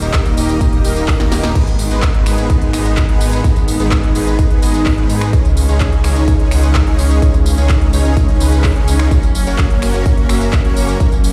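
This short cut from a longer festival progressive house track sounds as if it is playing through a big sound system in a bare room, with a stone-like reverb hanging around the mix. At 127 BPM in a straight 4/4 and G# minor, the mood is powerful and emotional, with harmony moving from D# to G#m at 1.6 seconds, then C#sus2 and F#. A big-room kit with a crisp, tape-tinged edge runs from the start: snare, hi-hat, handclaps, finger snaps, tambourine and crash, with a drum fill at 1.2 seconds. A punchy, layered electronic kick sits up front from 0.1 seconds. Huge, lush supersaw chords carry the riff with a bright unison shimmer, treated with analog chorus, delay and sidechain pumping. Beneath them a thick, menacing detuned saw bass beats through tube saturation, while a smooth, bowed string section holds sustained chords with vibrato in the background, both pumping with sidechain compression.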